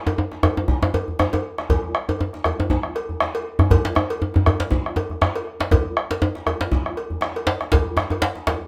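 West African traditional drum ensemble in a driving, festive groove with a light swing, where a deep, dark bombo sits up front beside a close, warm, deep djembe, a metallic cowbell rings out from a small room, and a second, medium-tuned djembe played with soft hands sounds distant in a larger space, all four percussion parts playing throughout this short cut from a longer piece under moderate studio reverb.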